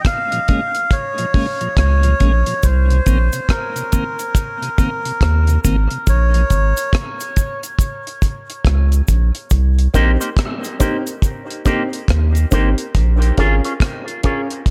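Meditative and spacious, this dub reggae excerpt at 70 BPM in Bb dorian swings its 16ths over a dry, dark drum kit of hi-hat, tight kick and rim click, with a round, deep sub bass up front. A reedy, breathy melodica carries the tune through dub echo for the first 7 seconds, while a piping, lightly overdriven tonewheel organ with key click and a stopped rotary speaker accompanies it and a close cabasa sits in the background. At 9.9 seconds a bright, twangy guitar through an envelope filter and a woody upright piano with audible action noise enter, the piano playing echoed stabs, all in an echo-heavy mix with a small room and light reverb.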